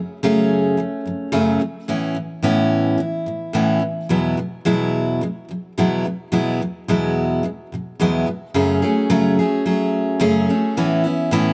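Heartfelt and carefree, this short pop fragment features a lone picked steel-string acoustic guitar, bright and full-bodied with a dreadnought's depth and audible finger squeak, sitting up front in light reverb as it moves through F#madd9, Aadd9 and Eadd9 chords before returning to F#madd9 at 8.5 seconds.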